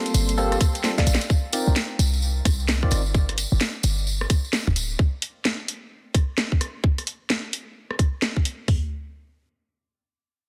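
A skippy two-step garage groove at 130 BPM in 4/4, swung on the sixteenths, sets a late-night C minor mood in this short cut from a longer piece. It opens on a drop, with a very quiet, clear violin section holding sustained chords and a barky, lightly overdriven tine electric piano punching out stabs through phaser and dub echo, moving from Gm11 to Cm11. A soft, pure FM synth bell flickers briefly in the background around 1.0 seconds, colored by chorus and phaser. A drum fill leads out of the opening at 1.3 seconds, and the two up-front layered garage kits carry the groove, one with a cracking snare, rim clicks and hi-hats, the other with a tight kick, toms and hats. A punchy, fast-attack 808-style bass with a noise layer and a close, jingly tambourine run until 5.0 seconds, when the harmony drops away and only the drums continue. The sound is dense and heavily limited, with light reverb.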